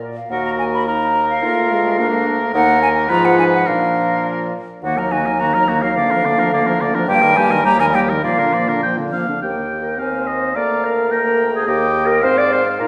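This quick classical-period movement for wind quintet, cut from a longer piece, moves at 106 BPM in a straight 2/4 with a restless, stormy mood. It opens in Eb minor and turns to Eb major at 7.1 s, and a new section begins at 9.4 s. The hollow, pure silver concert flute carries the melody high above the ensemble with vibrato and tongued notes. The oboe sits up front with a smooth top and vibrato on the second line, while the mellow, distant clarinet and the clear French horn fill in the accompaniment. The bassoon anchors the bass with a warm tone and light vibrato. Everything sits in a wet recital hall reverb that gives the music a roomy concert-hall sound.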